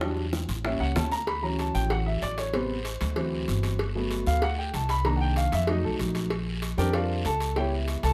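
A light reverb surrounds this lively, danceable Afro-Cuban jazz excerpt at 191 BPM in straight 4/4, with an up-front, woody upright piano taking a solo across all 8.1 seconds over chords moving from Em7 through Dmaj7 and Gmaj7 to Bb6. A growly, pizzicato upright bass with steel strings sits close beside it, while round, low-tuned bongos and cowbell ring in a live room and a raspy guiro scrapes, close and dry, further back in the mix.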